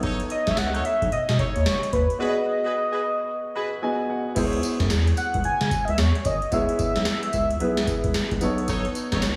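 A booming analog drum machine drives this slick, bouncy new jack swing groove at 111 BPM in 4/4, its 16ths swung, with a deep kick, crisp snare, metallic hats, tambourine and crash cymbal sitting up front with a tape-warm character from being re-recorded in a large room. Beneath it, a round analog bass built from square and sine waves with a wave-folded, evolving tone holds down the low end in C# minor, while a concert grand piano with rich low register and slapback echo carries the accompaniment throughout. A clear, tight jazz-style horn section punches stabs through the opening until 3.7 seconds and returns briefly near the end, and an octave-doubled sawtooth lead, bold yet mellow with chorus, slapback echo and digital delay, sings the retro melody from 0.3 seconds. The harmony moves from B9 to G#m7, where a break opens at 2.2 seconds and the piano plays a fill leading into the second section on C#m7 at 4.4 seconds. 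A lush hall reverb gives the whole a big arena sound, and the passage is cut from a longer piece.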